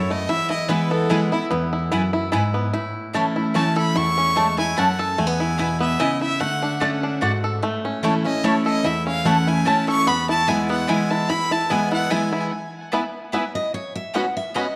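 Rustic and lively, this bluegrass excerpt moves at 147 BPM in a swung 3/4 in E major, with a bright, biting fiddle carrying the melody up front in a nasal, airy-bowed voice touched by light vibrato and tape echo, dropping out briefly before returning at 3.6 seconds. Beneath it, a full-bodied dreadnought guitar supplies picked accompaniment with audible finger squeak, a twangy fingerpicked banjo plays percussive arpeggios, and a woody double-strung mandolin adds stabs from 0.7 seconds. The fiddle's solo gives way to the guitar at 12.5 seconds, all set in a wet echo-chamber reverb with studio ambience.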